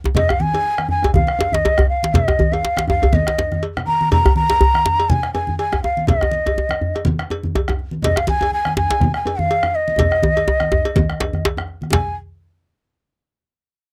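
West African traditional drum ensemble music, festive and driving, moves at 123 BPM in 4/4 with a light swing on the sixteenths, and the tempo gradually speeds up across this short cut from a longer piece. A breathy, mellow bamboo bansuri carries the melody up front between Eb5 and Bb5, its tongued notes colored by vibrato and rolled-off highs. Beneath it, two djembes share the drumming: one tight and cracking, close and dry at the front, the other warm, deep, compressed and saturated, played with soft hands in the background. Low-tuned congas with a thick-skinned sound and a round bombo, both heard in a small room, fill out the rhythm, while a metallic cowbell rings close by. Drum fills break in at 3.7 seconds and again from 10.0 to 11.9 seconds, just before a new section begins at 11.9 seconds. The recording has the dry, close feel of a 1970s studio with little reverb.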